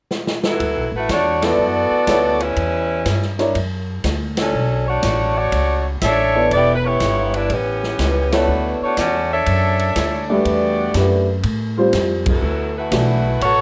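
A short drum fill opens this energetic big band swing excerpt at 0.1 seconds, and the acoustic kit then settles into a natural studio-room groove of hi-hat, ride cymbal, a medium-tuned snare and a punchy kick at a swinging 122 BPM in 4/4, in D major. A bright saxophone section carries the melody up front, singing with vibrato in a full ensemble jazz style. Close behind, the upright bass plays pizzicato with a growly, woody tone on steel strings, sitting forward in the mix. From 1.4 seconds a warm upright piano fills in the accompaniment with a natural, long-sustaining sound. Sharp band accents punctuate the passage as the harmony moves through rich extended chords such as D69, Bm11 and Dmaj7, all set in a moderate large studio reverb that gives the brassy swing a sense of space.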